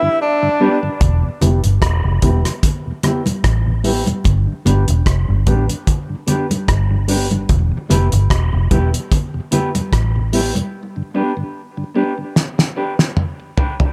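Heavy and spacious, this 74 BPM dub reggae cut in E phrygian opens with a brief, breathy tenor saxophone phrase drenched in dub echo over a soft, flute-like tonewheel organ turning through a slow rotary speaker, with a dark, clean electric guitar entering at 0.6 seconds. At 1.0 seconds a cloth-damped drum kit with a fat snare and tight kick arrives up front alongside a round, foam-muted bass and bright, thin-skinned congas carrying dub echo, all riding a swung sixteenth feel as the chords shift between Em and G under a filter sweep. The bass and congas drop out near 10.7 seconds, leaving the organ, guitar and drums in a break that closes with a drum fill, all set in a light, small-room ambience.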